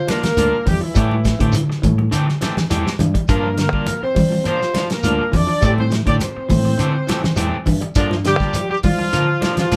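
A clear, tight horn section carries the melody up front from the opening moment, with a breathy, whispered trombone tracing a second line behind it in this hypnotic, defiant afrobeat passage at 103 BPM in G dorian. The band then falls in together: a soul drum kit with a tight kick and rolled-off top, bright congas, a grainy shekere, dark slightly broken-up guitar arpeggios and twangy picked guitar stabs, with a round fingered bass joining at 0.4 seconds. The harmony sways between Gm7 and Am7, and the whole group sounds as if it is playing live in one small room with moderate ambience.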